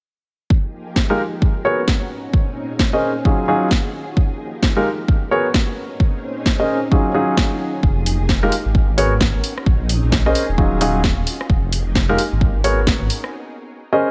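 A punchy electronic kick starts this bouncy, late-night two-step UK garage cut in F phrygian at 131 BPM with a 61% swing on the sixteenths, joined by a house kit's cracking snare, hi-hat and rim click, silky string-machine chords with ensemble chorus and sidechain pumping, and warm grand-piano stabs through a low-pass filter and delay cycling minor-eleventh chords from Fm11 through Abm11, Bbm11 and Ebm11, before a deep, rumbling detuned saw bass enters at 7.8 seconds and most of the parts drop out for a brief break at 13.3 seconds, all in a dry, up-front mix.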